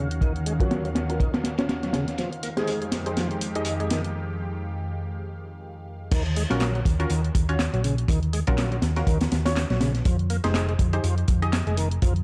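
Swung sixteenth-note breakbeat drums from a crunchy, saturated kit with a punchy kick, high-tuned snare and dark cymbals drive this raw, gritty excerpt, joined by dry analog drum-machine claps and hats, an overdriven tonewheel organ riff through a slow rotary speaker and 12-bit sampler texture, muted dub chord stabs with delay, and a lush detuned sawtooth pad with sidechain pumping over Ebm9 and Fm9 chords, all moving through a filtered build-up, drum fill and break until 6.1 s, when a round, hollow-body picked electric bass enters for the drop.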